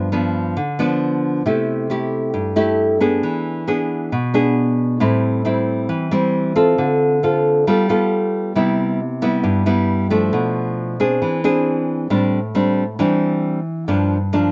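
A bright, up-front nylon-string guitar plays fingerpicked, classical-style bossa nova alone in this wistful, smooth fragment of a longer piece at 135 BPM in a straight 4/4, tuned to A4 = 436 Hz. It moves from G7 and C6 through Am7 and G9 before settling into C major at 8.6 s with Cmaj7, Bm7b5 and Eaug7, all within a dark production touched by light reverb.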